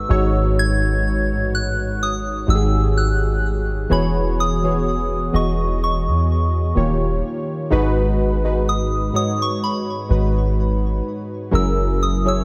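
At 63 BPM in 4/4, with a light swing on the sixteenths, this short cut from a longer contemporary R&B piece moves at an unhurried, romantic pace in E major. A soft 808-style bass sits up front from the first moment, its deep, round sine tone striking quickly and then decaying into a dark low end. Above it, warm analog keys carry the accompaniment, blending detuned sawtooth and square-wave tones with a sub octave and a filter sweep, their mellow voicing thickened by chorus. A gentle FM synth bell takes the melody high in the register, soft and pure, with a long release shimmering through chorus, phaser and delay. The harmony glides from Emaj9/G# into E6 at 3.9 seconds, then through D#7 and G#m7 before settling on F#9 at 11.5 seconds, all wrapped in a light digital ambience that keeps the mood smooth.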